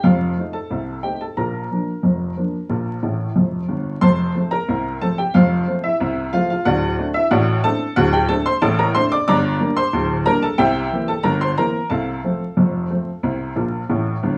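A worn, woody upright piano plays alone from the first second in this playful, lively ragtime excerpt, its slightly detuned, short-sustained tone sitting up front over vinyl crackle, small room ambience and light reverb. After a brief opening passage that closes with a fill at 3.0 seconds, a new section begins at 4.0 seconds and moves through changes in F major before a final fill at 13.6 seconds leads toward the cut at 14.4 seconds.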